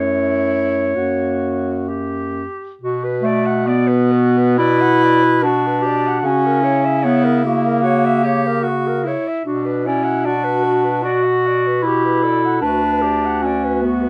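A mellow clarinet carries the accompaniment up front in this elegiac, yearning classical excerpt for single-reed quartet, while a clear, soft-attacked clarinet sings the melody over a bright alto saxophone second line with light vibrato and a clear, vintage bass clarinet underneath, all moving in rubato 4/4 at around 61-79 BPM in B minor with light reverb, settling from F#-colored harmony onto Bm at 2.8 seconds.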